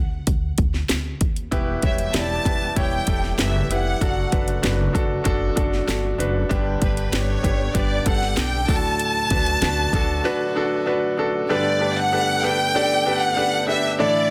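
Uplifting and warm, this piano-driven pop piece moves at a straight 96 BPM in 4/4, cut from a longer work. A woody, thumpy pizzicato upright bass with gut strings opens the piece, and a punchy, layered electronic house kit with cracking snare and metallic hats follows, sitting up front. At 1.5 seconds, a brilliant concert grand with deep bass and short sustain takes up the accompaniment. An overdriven tonewheel organ adds gritty, thick sustained chords in the background, with chorus vibrato, key click and a fast rotary speaker. A close, expressive violin section carries the bowed melody with vibrato and portamento over chords moving from Em through D/F#, G and D. The bass and drums drop out around 10.2 seconds, and the piano, organ and violins settle onto Gadd9 from 11.5 seconds, all under light reverb with small room ambience and a dense, heavily limited modern master.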